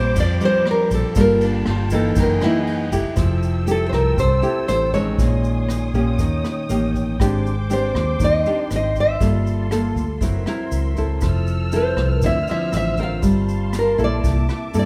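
A straight 4/4 bossa nova groove at 119 BPM in F major carries this romantic, sunny excerpt, where two up-front, fingerpicked classical nylon-string guitars, one with fresh strings on the melody and one woody with old strings on the accompaniment, move over rich chords like Bbm11 and Abmaj7#11, supported by a round, foam-muted vintage electric bass, a distant, veiled con sordino string section holding lush sustained chords, and, from 0.2 s, a dark brushed drum kit with a punchy kick and rolled-off top alongside a grainy tube shaker tucked in the background, all set in a moderate recital-hall reverb.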